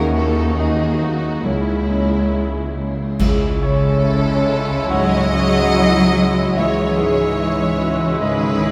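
Rubato in 4/4 at roughly 68-74 BPM, this sorrowful, bittersweet cinematic film score cue in C# minor is cut from a longer orchestral piece. A clear violin section carries the smooth, vibrato-laden melody. Second lines come from a hollow flute ensemble, a rich, distant second violin section and a very quiet, roomy solo clarinet. Beneath them, a focused viola section and a concert grand piano with deep bass form the accompaniment, a mellow French horn section holds sustained chords, and a ringing, fingerpicked harp plays arpeggios, while expressive cello and lush double bass sections anchor the low end. At 3.2 seconds a new section begins with an accent from the ensemble: a distant solo oboe joins on E5, and clash cymbals with concert bass drum add dark, close weight until 4.9 seconds. The harmony moves from D#m to C#m, and a huge, wet ambient reverb sets the orchestra in a vast, echoing space.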